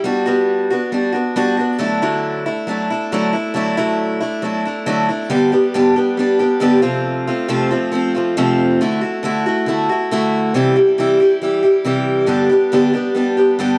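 A lone picked steel-string acoustic guitar opens on a Gmaj7 and moves to Dadd9, its bright, boxy parlour tone sitting up front with audible finger squeak, in a jangly, hopeful rock piece in G major at 138 BPM in straight 4/4. At 5.3 seconds a new section cycles through G, F, Dadd9 and C before returning to G at 12.3 seconds. The home cassette recording carries a small-room ambience, and the 13.8-second clip is cut from a longer piece.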